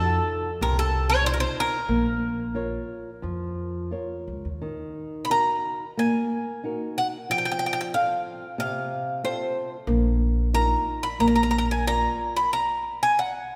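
Passionate and mournful, this short fado-style ballad moves at 90 BPM in 4/4 with a rubato, uneven pulse, settling in Bb minor before shifting to Eb minor at 4.6 seconds. An up-front Irish bouzouki carries the melody with a picked, metallic double-string ring, over a bright, thumb-plucked flamenco guitar accompaniment and a woody pizzicato upright bass that drops out at 4.6 seconds and returns at 9.9 seconds. A wet concert hall reverb surrounds the trio, and the bouzouki sounds on alone until 13.6 seconds after the guitar stops.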